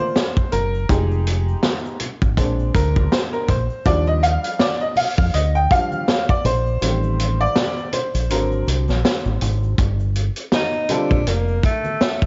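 A bright, woody upright piano, slightly detuned and worn, leads this mellow, cool jazz-hop excerpt, taking the solo spotlight from the start over rootless minor-seventh and extended jazz chords. Beneath it, a vintage drum kit with a punchy kick and medium-tuned snare sits up front, swung and colored by cassette tape. A very quiet tube shaker and congas add hard-handed accents from a distant, large room. A deep, dark, round fingered electric bass in a dub style anchors the low end. The kick drops out around 6.8 seconds, and at about 10.5 seconds a breathy, intimate tenor saxophone steps forward for a short solo, its subtone, vibrato and scooped notes softened by tape echo. The whole piece has the feel of a home cassette recording, with a small, lightly reverberant room and a muffled high end.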